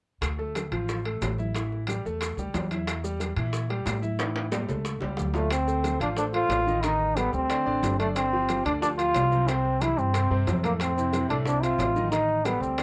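A bright solo trombone with vibrato and a distant, roomy, cassette-tape colour takes the lead up front from 5.3 s in this fiery, passionate salsa excerpt, over a woody, thumpy pizzicato upright bass with gut strings, a clear, smooth concert grand piano with deep bass that shares the trombone's cassette-tape colour, ringing metal-shell timbales, and tight high-tuned bongos, compressed congas and grainy maracas kept in the background, with a drum fill from 4.2 s to 5.5 s and a small home room around the band.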